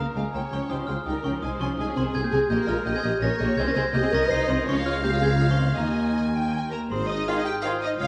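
Cinematic orchestral music in a mischievous, playful mood moves at 165 BPM in 3/4 and Ab major, with a ringing, bell-like glockenspiel carrying the melody over a warm violin section, while a rich, distant second violin line, lush violas and mellow, tight French horn chords fill out the harmony above a dark, woody cello section, dark tuba and double basses. Clarinet enters at 6.9 s, and an oboe, a hollow silver flute and a bassoon add brief touches from 7.3 s as the progression lands on Ab. The whole is set in a moderate scoring-stage reverb, and the passage is cut from a longer piece.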